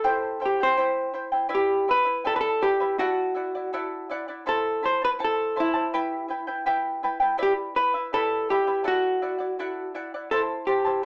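Andean folk at 82 BPM in 2/4, festive yet melancholic, with a dark, clean vintage hollow-body jazz guitar picking the melody up front over a fingerpicked charango whose shimmering double strings ring out a warm accompaniment, all heard through a wet studio reverb and the small-speaker sound of a rough home demo, in this short cut from a longer piece.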